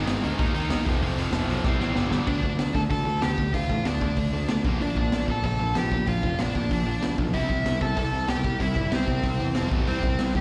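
Punk rock at 190 BPM in a straight 4/4, upbeat and energetic, this excerpt is cut from a longer piece and has the feel of a live gig heard through a venue's PA with recital hall reverb around it. Two distorted electric guitars open with a riff, one scooped and compressed with slapback echo that drops out at 2.3 s, the other a tight, bright part sitting in the background that carries on to the end. A fuzzy, overdriven picked bass sits up front from 0.1 s, while a raw garage drum kit plays on hi-hat, boomy kick and high-tuned snare, its small, pumping room sound saturated and gritty with a rolled-off top. A drum fill from 1.6 to 2.3 s launches the second section, where a smooth overdriven lead guitar enters up front with slapback echo, singing a melody between C4 and A5. Beneath it the harmony moves through Dm, Bb and C, and the tuning sits slightly low at A4 = 435 Hz.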